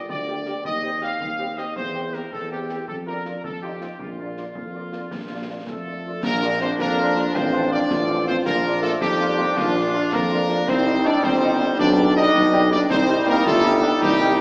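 A spirited, proud military-style march for wind band in 6/8 opens with a bright, up-front trumpet section carrying the melody over a warm solo tuba bass line and very quiet concert bass drum, snare and clash cymbals whose dark cymbals sound close and dry. Almost at once a clear, tightly played woodwind section adds a faint second line, while a distant, roomy French horn section fills in the accompaniment from the background. At 4.6 seconds a smooth-topped euphonium joins with its own second line, and at 6.2 seconds a mellow trombone section enters behind it with sustained chords as the opening phrase begins again. Light vibrato colours the woodwinds, horns, euphonium, trombones and tuba, giving the classical-style ensemble a stately lyricism. The whole band sits in a generous recital-hall reverb with the boxy, narrow tone of an AM radio broadcast, and the passage is cut from a longer piece.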